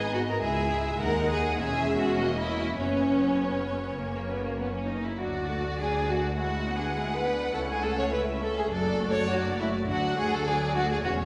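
A string orchestra begins together in a lively, cheerful classical-period movement with a flexible, rubato pulse, the first violins singing a focused melody with vibrato above a rich, up-front second violin line. Beneath them the violas give smooth, even accompaniment while the cellos sit in the background and the double basses add a clear, intense low end with light vibrato, the harmony moving from C#m through F#sus4 and F# to D, E7/D and A/C#. A wet concert-hall reverb surrounds the bowed ensemble, and the passage breaks off at 11.2 seconds, cut from a longer piece.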